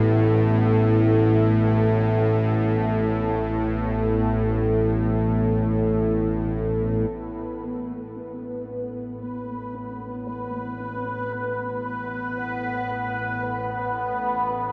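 Unfolding in free time, this desolate, cavernous dark ambient drone is cut from a longer piece and sits in a huge, wet reverb. An up-front, string-like bowed drone with a tense, ring-modulated edge and vibrato holds the low register beneath a deep, moody pad whose detuned, chorused sustained chords carry a sub octave, opening on an Asus2 chord. At 7.1 seconds a bubbling stepped-filter texture with resonant, random filter steps enters up front, as a fade-in on the synth drone runs to the end at 14.7 seconds.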